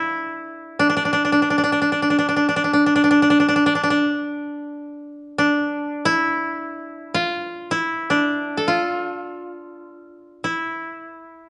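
Set in a moderate recital hall with a soft, rounded top end, this brief passage of traditional Japanese chamber music feels still and solitary in free time. A lone koto, plucked with fingerpicks, sits up front with a dry, woody tone, moving within a narrow range from D4 to A4 across its 11.5 seconds. It is a short excerpt lifted from a longer piece.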